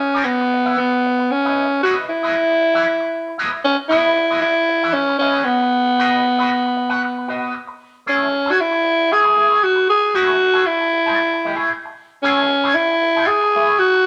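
A breathy, raspy tenor saxophone sits up front carrying the melody in this hypnotic, driving funk excerpt, while a bright, twangy electric guitar run through an envelope filter supplies clean, picked accompaniment beneath it, the band playing live together in a stone room whose moderate reverb frames the harmony's move from C#m9 to B and then to a rootless F#m9 at 7.8 seconds.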